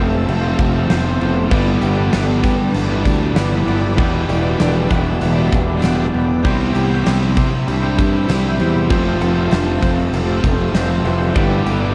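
A reedy FM lead with diffuse delay drifts alongside shimmering string-machine violins, a compressed direct-recorded clean guitar, a biting double-tracked overdriven guitar, a crunchy chorused overdriven guitar, a twangy reverse-reverb guitar and an up-front round fuzz bass, before a huge, punchy arena drum kit enters at 0.3 s and a jingly tambourine at 1.7 s, shaping this wistful, dreamy 98 BPM shoegaze and dream pop fragment that moves through Fmaj7, G6, Em7 and Cmaj7 in a hall-soaked, cassette-tinged mix.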